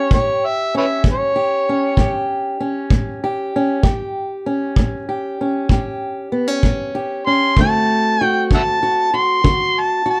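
An overdriven, amplified harmonica and a fingerpicked old ladder-braced acoustic guitar open together in this gritty, rollicking slice of acoustic country blues, cut from a longer piece and set in A mixolydian at 64 BPM in a straight 12/8. The harmonica carries the melody up front with a warm, gritty tone, soft attack, vibrato, scooped notes and tongue slaps, phrased in a jazz-inflected solo style. Beneath it, the guitar's dark, woody, boxy sound and old strings give the accompaniment a weathered character, also sitting up front. A kick drum enters at 0.1 seconds and drops out at 9.6 seconds, a punchy, roomy small-room sound with brushes and a rolled-off top. The harmony rests on A7 before moving to D7 at 7.6 seconds, and the dark production carries a light reverb.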